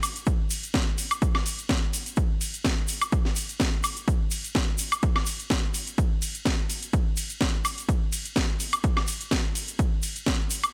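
A house drum kit of metallic hats, ride cymbal, cracking snare and woodblock opens with a grainy, bright egg shaker set in the background, joined at 0.3 seconds by a punchy, overdriven electronic kick up front, driving this gritty, aggressive 126 BPM house groove in 4/4 with a light sixteenth-note swing, all kept dry in a brief cut from a longer piece.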